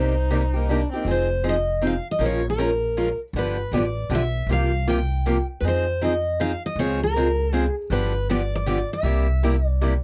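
Acoustic string swing in the jazz manouche style, fiery yet bittersweet in a swung 3/4, with a bright, full-bodied picked steel-string guitar carrying the melody up front while a second, boxy parlour-style guitar with audible finger squeak supplies the accompaniment. A warm, bowed violin adds a brief expressive second line with vibrato and portamento that stops at 1.0 seconds, and a woody, thumpy pizzicato upright bass on gut strings anchors the low end. The dry, close studio sound recalls the 1970s, and the passage moves through minor-seventh and dominant harmony before landing on C7 at 9.0 seconds.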